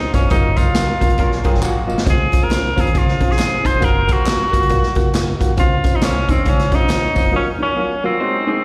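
Uptempo 1960s-style soul with a joyful, danceable swing, this piece is led by a forceful, bright tenor saxophone with vibrato and slapback echo, set over a woody upright piano, a dark, thumpy gut-string upright bass and a punchy, roomy big-band drum kit. Tambourine and group handclaps sit in the background, and a twangy, slightly broken-up electric guitar riff appears at 1.2 seconds alongside a piano fill. Very quiet, damped congas join at 2.3 seconds, and a break at 7.3 seconds leaves the sax and piano, with the guitar briefly returning, all heard through a venue PA in a recital-hall reverb as a cut from a longer piece.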